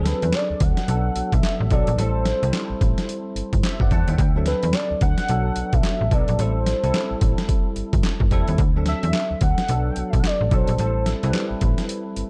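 A dry, dark mix frames this confident, bouncy new jack swing R&B excerpt at 109 BPM in A dorian, where a gritty, overdriven sampler-style drum kit with thumpy kick, handclaps and hi-hat swings up front beside a snappy, metallic FM slap bass, while a bell-like tine electric piano with ensemble chorus cycles through D7, Bm7 and Am7 and a velvety synth lead with chorus, vibrato and digital delay carries the melody from 0.1 to 11.4 seconds.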